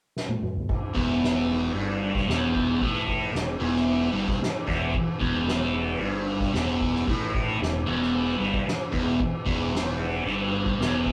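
Psychedelic rock at 113 BPM with a kaleidoscopic, trippy mood, this short excerpt opens with a drum fill on a roomy kit played with soft mallets, fat snare and punchy kick, before a bright, double-tracked fuzz guitar riff drenched in distortion and phaser arrives at 0.9 seconds together with an overdriven fingered bass on an E minor add11 chord, all captured with moderate studio ambience and tube saturation in a rough rehearsal-room sound.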